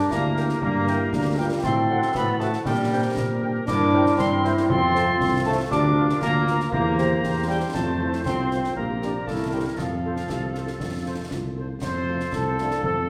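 A straight 2/4 march pulse at 118 BPM drives this proud, rousing excerpt for wind band in F major, cut from a longer piece and set in a reverberant church or concert hall acoustic. Concert snare drum, concert bass drum and clash cymbals with dusky cymbals keep time in a small-room sound, while an up-front tuba, dark and smooth-topped, anchors the bass. A bright trombone section holds sustained chords, and a very quiet, distant French horn section adds accompaniment. The trumpet section carries the melody from 0.4 s, though it sits shadowy and roomy in the background, surrounded by second lines from a mellow euphonium, a woodwind section with light vibrato, and a pure, crisp-attacked piccolo with lifted highs that drops out at 11.3 s. The harmony moves from G minor through diminished and dominant chords to settle on F, closing with a cadence through C7 to F at 9.8 s.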